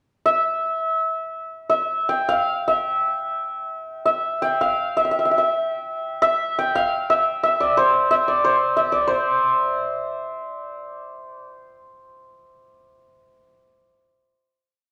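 Indian classical music, radiant and serene, carried by a lone santur that plays up front from 0.3 seconds, its bright, hammered, shimmering tone ringing through a slapback echo as it weaves a composed line and improvisation within a rhythmic cycle in three. The piece opens at its climax and keeps speeding up until 10.9 seconds, settling on a final note that closes the brief performance at 11.7 seconds. A moderate recital-hall reverb surrounds the instrument, while the worn, warbling cassette sound adds a warbly pitch drift.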